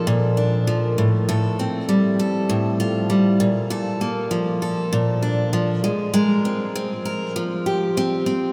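A picked steel-string acoustic guitar carries this short pop excerpt alone, setting an easy-going, heartfelt mood at 99 BPM in 4/4 with a gentle 16th-note swing. Sitting up front, the guitar has a warm, auditorium-like body and spans from A2 up to Bb4. Its chords move in Bb major from Bbmaj7 to Fadd9/A, back to Bbmaj7, then to Abadd9 before settling on Fsus2 at 7.4 seconds. A huge, wet reverb with a long tail places the instrument in a vast, echoing space, so each chord lingers and blooms around the playing. Cut from a longer piece, the passage runs just 8.5 seconds.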